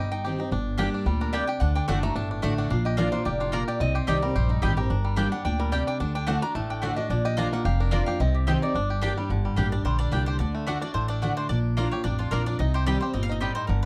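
Bluegrass in G minor at a brisk 218 BPM, this driving, rustic passage is cut from a longer piece and swings its eighth notes lightly over a 4/4 pulse. Fingerpicked banjo carries the twangy, percussive melody throughout, while a lap resonator guitar, played with a steel bar, adds a metallic, nasal second line that takes a solo until it stops at 9.0 seconds. Underneath, a bright, full-bodied jumbo steel-string guitar picks the accompaniment, and a dark, thumpy upright bass with gut strings sits up front as the loudest part. One mandolin adds woody double-string stabs from 0.8 seconds, and at 9.7 seconds a second mandolin picks up a melody as the music moves into a new section. The chords cycle through Cm, Gm, D and Bb, and the dry, close sound recalls a 1970s studio with little reverb.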